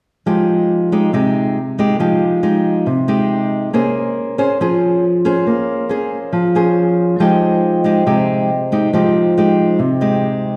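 A wet concert-hall reverb surrounds this short, wistful bossa nova, giving it the spacious ring of a church or large hall. At 139 BPM in 4/4 with a straight feel, it sits in F minor, moving from Fm9 to Bbm9 and back to Fm9. An acoustic nylon-string guitar carries the accompaniment from the start, fingerpicked with an intimate, up-front tone that is small in scale yet rounded and inviting. At 7.2 seconds a vibraphone played with medium hard mallets enters in the background, its bright, metallic, airy notes shimmering with a slow motor vibrato. The melancholic mood lingers on the final chord before the piece, cut from a longer work, breaks off at 10.6 seconds.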